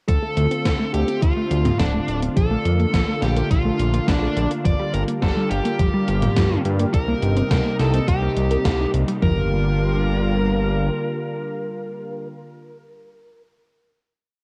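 Driving straight 4/4 at 105 BPM, this moody synthwave piece in G minor rides a gated 80s digital drum machine, with thumpy kick, floor toms, gated-reverb snare, closed hi-hat and low toms in a small room, under an up-front, fat sawtooth bass pumping in eighth notes, a silky, bright string pad with ensemble chorus and sidechain pumping, a punchy unison pluck arpeggio tucked in the background under a filter sweep, and a dark, overdriven picked lead guitar carrying motif-based phrases through analog delay; the band hits an accent at 8.7 s before settling onto a closing Gm7 chord at 9.2 s, and the piece is captured as a home cassette recording with light reverb.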